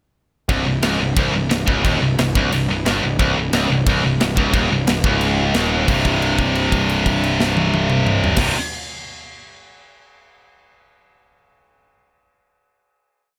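A driving 178 BPM heavy metal groove in straight 4/4 powers this short, epic and aggressive C minor piece, where an up-front, high-gain guitar and a tight distorted guitar churn out bright, picked single-note riffs over a growly fuzz bass doubling the riff in eighth notes and a polished, airy drum kit with a tight kick and bright cymbals, all in a small room ambience, before the band lands on a held C5 final chord at 5.9 seconds.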